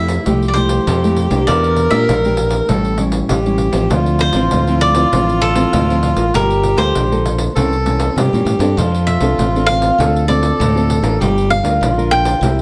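A moderate studio reverb gives this short cut from a longer samba-choro piece a natural sense of space, with the fingered electric bass sitting bright, direct and up front. At 99 BPM in a straight 4/4 and F major, the mood is bittersweet and yearning. The crisp, picked cavaquinho carries the melody in a plate reverb, while a mellow, breathy tenor saxophone plays a second line with light vibrato, subtone and scooped notes in a jazz style. Beneath them, a warm, thumb-plucked classical nylon-string guitar provides the accompaniment, and a jingly pandeiro, compressed and saturated with hard hands, comes in at 0.1 s. The harmony moves from Fmaj9 through Em7b5, A7 and Dm9 to Gm9 and C7b9, then reaches F6 before turning toward Dm7 and Gm7 as the passage ends at 12.6 s.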